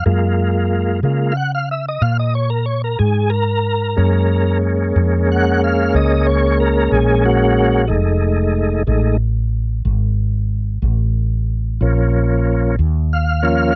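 Brooding and mournful, this slow blues excerpt in 12/8 at 61 BPM features a smooth, clean tonewheel organ taking the lead with sustained chords through a slow rotary speaker and chorus vibrato, over a round, dark fretless electric bass with a subtle chorus, both up front in a dry, close 1970s-style studio sound as the harmony moves from Gbmaj7 to F7#9 at 7.9 seconds and Bbm at 11.8 seconds.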